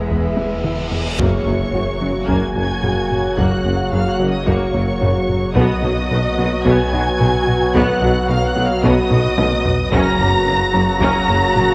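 A reverse cymbal sweeps into an electronic impact at 1.2 seconds, opening this tense, brooding excerpt of a hybrid orchestral and electronic film score at 110 BPM in a straight 4/4. Lush bowed strings carry the music: a distant, smooth symphonic violin section sings the melody high above, while a dark studio violin section shapes an expressive second line with portamento, and rich violas, very quiet cellos and focused double basses fill out the harmony and low end. A mellow French horn section holds sustained chords alongside a deep, moody ambient pad, and from 1.2 seconds a clear trombone section joins in the background with a roomy, distant tuba underneath. Electronic layers thicken the foundation, with a saturated, thick sub bass, a rubbery, hollow square-wave bass riff in the background and a soft, round pluck tracing gentle arpeggios with chorus. Vintage, band-limited taiko drums struck with heavy sticks pulse in the background, adding fills just before 1.2 seconds and again near 9.1 seconds, as the harmony moves from E to Gb, then B, then back to Gb. 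The whole mix sits in a wet scoring-stage reverb and carries the worn, warbling pitch drift of old cassette tape.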